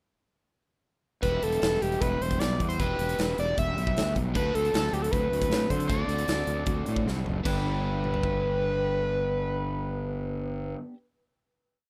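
A screaming, saturated synth lead sits up front in this short, carefree indie rock piece, playing a motif-based melody of call phrases with slapback echo, plate reverb and vibrato over a brisk 155 BPM in G major. Underneath, a growly fuzz bass drives steady eighth notes in its own overdrive, while a double-tracked overdriven guitar rings out chords further back in the mix. A big rock drum kit with bright cymbals and a punchy kick holds a pop groove through a pre-chorus that moves from E minor to D, then closes on a drum fill at 7.1 seconds. The drums stop at 8.3 seconds as the band lands on a final G chord and lets it hang until the guitar drops out at 11.0 seconds. The mix has the rough, lightly reverberant feel of a home demo.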